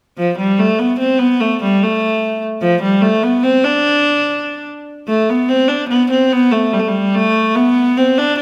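A lone bowed viola da gamba sits up front in this driving, ancient-feeling medieval excerpt in triple time, its biting, reedy gut-string tone, light vibrato and ringing fretted notes carried by a wet recital-hall reverb as the playing moves from an opening passage into a second section at 5.1 s before breaking off at 8.4 s.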